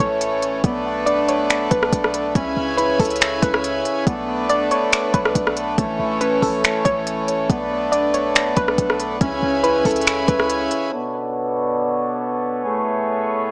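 A half-time 4/4 groove at 140 BPM from a smooth, overdriven R&B drum kit of soft kick, crisp hi-hat, finger snaps and rim clicks anchors this ethereal, spacious cloud-rap excerpt in B dorian, joined by a deep, boomy 808-style bass, a reedy, breathing pedal harmonium pumping up front through a low-pass filter, a round, gentle pluck carrying the melody, and warbling, nostalgic lo-fi synth arpeggios tucked in the background, the pluck and synth keys both colored by chorus and digital delay, with the whole mix set in a lush hall reverb and a small-speaker tone until the other parts have stopped by 10.9 s and the harmonium carries on alone under a filter sweep to 13.5 s.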